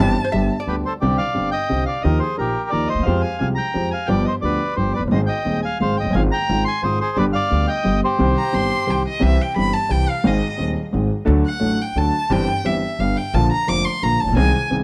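A reedy, up-front bandoneon carries the melody from 0.7 to 9.0 seconds in this dramatic, sultry tango excerpt in C minor, taken at 175 BPM in a rubato 3/4. Beneath it sit a smooth, vintage grand piano and a woody pizzicato upright bass. A clean, hollow-body electric archtop guitar adds a brief second line at the opening. A rich, distant bowed violin, full of vibrato and portamento, returns at 8.4 seconds and takes the solo from 9.2 seconds to the close. The sound is a dry, close 1970s-style studio recording with light small-room reverb.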